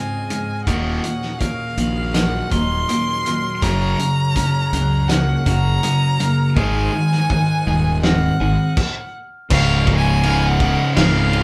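A band playing live in one room, drenched in wet studio reverb, drives this soaring, euphoric post-rock passage in Db major at 82 BPM, cut from a longer piece. A smooth, close solo violin with vibrato carries the melody over a clear, very quiet symphonic string section, bright clean electric guitar arpeggios with a twangy edge, and mellow bell-like glockenspiel struck with rubber mallets, while a bright overdriven guitar riff, a punchy, fat-snared indie drum kit and a growly fuzz bass power the build-up. A sludgy distorted guitar joins the riff at 3.6 seconds, and after a brief stop from 8.8 seconds the band lands back on Dbmaj7 at 9.5 seconds.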